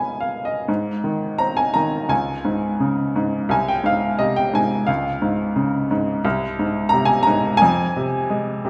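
Rubato throughout, this brooding, cool classical excerpt features a lone upright piano, brilliant and woody with a short sustain and an up-front presence, opening with a brief fill before a lyrical passage from 0.7 seconds unfolds over chords such as Ab, Db and Fm in the moderate reverb of a church or concert hall.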